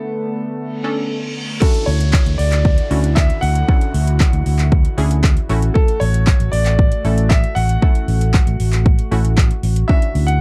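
A dark, lightly reverberant production carries this upbeat, euphoric dance-pop excerpt at 116 BPM. It opens on a short break over Bm9, where a clear concert grand piano carries the melody beside a glassy, crystalline wavetable pluck and a smooth, sawtooth analog pad; the pluck and pad share chorus and sidechain pumping, and an electronic reverse cymbal and downlifter enter at 0.8 seconds. At 1.6 seconds a punchy, overdriven pop drum kit with metallic hats and handclaps arrives up front, followed at 1.9 seconds by a round, foam-muted vintage fingered electric bass that also pumps, while a barely audible group handclap sits beneath as the chords move through Dmaj9 and A6.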